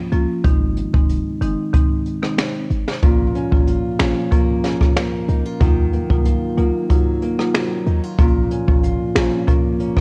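A home cassette recording with small-room reverb carries this tough, bouncy dancehall excerpt, where a woody, boxy marimba and a deep, mellow 808-style bass play alongside an up-front jazz brush kit with a high-tuned snare, finger snaps and vintage 12-bit sampler grit, before a bright, fingerpicked nylon-string guitar enters at 3.0 seconds with tape-echoed arpeggios.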